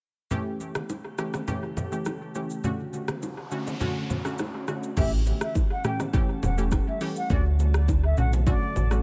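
Afrobeats excerpt at 103 BPM in A mixolydian, joyful and breezy, where a round, detuned analog pluck with chorus and delay and hard-handed congas and bongos ride an up-front afro-pop kit with a deep kick and metallic hats from 0.3 seconds, a very quiet glassy FM pad sustains A7 and Dmaj7 chords, a noise sweep sounds from 3.0 seconds and the kick drops out at 3.8 seconds, and at 5.0 seconds an airy, distant concert flute melody arrives over a full sine-and-triangle sub bass, all in a dry, echo-heavy mix with a dark top end.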